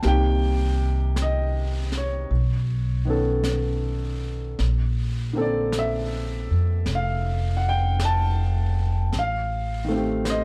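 A slow swing at 53 BPM in 4/4 sets an intimate, tender mood in this short jazz fragment cut from a longer piece. The upright bass plays pizzicato throughout, its woody steel-string tone placed up front. A clear, natural-sounding upright piano provides the accompaniment, close and present, with its action noise audible beneath the chords. A high-tuned brushed snare and hi-hat from an airy, polished brush kit sit quietly in the background. The harmony moves from Cm7 through B9 to Bbmaj9, then settles on Am7b5 at 9.1 seconds, all wrapped in light reverb and a dark, warm production.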